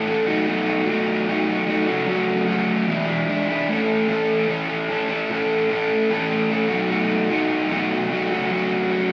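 Carefree yet wistful, this short rock fragment, cut from a longer piece, features a raw, overdriven electric garage guitar, picked and double-tracked up front, ringing through a wet stone-room reverb as it moves through B7, F#m and E7 before a new section opens on A at 3.7 s and circles back through B7 to F#m.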